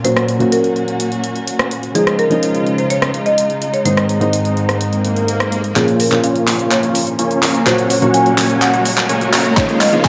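Uplifting and triumphant, this festival progressive house passage moves at 126 BPM in a straight 4/4 in Db major, cut from a longer piece. From the start a woody marimba with medium mallets carries the melody through a digital delay, over a dark, worn grand piano with audible action noise and boxy short sustain, and a bowed string ensemble sitting low-passed in the background, both pumping against the sidechain. An up-front, tape-warm house kit of handclaps, hi-hat, rim click and shaker drives the groove, while a very quiet swell and riser creeps in at 5.0 seconds. At 5.8 seconds the build-up begins: a huge, detuned supersaw riff with a bright edge and vibrato arrives under a filter sweep, a fat analog bass slips in very quietly beneath it, and the drums launch into a fill. A punchy, layered kick lands at 9.6 seconds as the chords cycle back to Dbadd9, all bathed in a lush hall reverb.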